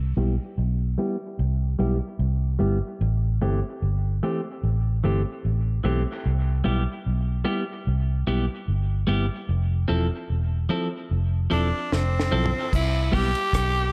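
A round, foam-muted vintage electric bass anchors this spacious, laid-back dub reggae excerpt over Cmaj7, Am7 and Fmaj7 chords while a bright, twangy clean electric guitar moves through a filter sweep and dub echo, and a raspy tenor saxophone with scooped notes and vibrato enters at 11.5 seconds, a dry, dark reggae drum kit with a high-tuned snare plays a fill from 11.9 seconds, and a very quiet cabasa adds a brief touch at 12.7 seconds, the whole set in a light small-room reverb.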